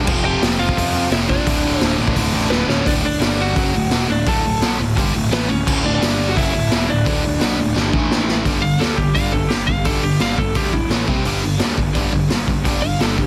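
Energetic and rebellious, this cut from a longer punk rock piece charges along at 172 BPM in a straight 4/4. A raw garage drum kit sits up front with a punchy kick, a medium-tuned snare, hi-hat and crash, its sound gritty and saturated with a rolled-off top, and it drives the track from 0.1 seconds to the end. Beneath it, a distorted electric guitar and an overdriven electric guitar play bright, picked riffs from the start, tucked into the background, while a fuzz picked electric bass growls low with an overdriven edge. A lightly driven lead guitar enters at 0.3 seconds, its slightly broken-up, compressed tone carrying the melody through a digital delay, and it takes over as a solo from 8.5 seconds to the end. Drum fills mark the turns into new sections, and the chords move through F5, D5, G5 and A5. The mix is dry, with a dense, heavily limited modern master.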